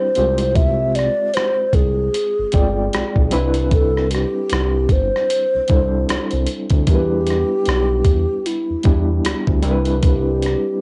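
R&B with a neo-soul lean, this relaxed, warm excerpt sits on a swung 16th-note groove, with a hollow, airy alto flute carrying the melody through cassette-tape coloring while an overdriven, reedy electric piano supplies chords through a combo amp with fast tremolo. A smooth synth bass with portamento glides up front beneath a dusty, sampler-style drum kit of hi-hat, thumpy kick and rim click, the drums compressed, gritty and taped as if re-recorded in a large room. The whole home cassette recording has light reverb and a rolled-off top, with harmony moving from Fmadd9/C to Cmaj9 and through Em7 back to Cmaj9.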